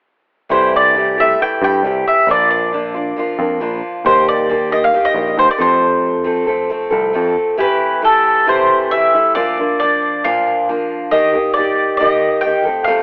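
Rock with a hopeful, open-road mood at 136 BPM, where a bright, double-strung bowl-back mandolin carries the melody through tape echo over a picked steel-string acoustic guitar and a punchy electric bass that drops out at 7.4 seconds, all in a rough home-demo mix with a telephone-like sound and a small-room reverb, cut from a longer piece.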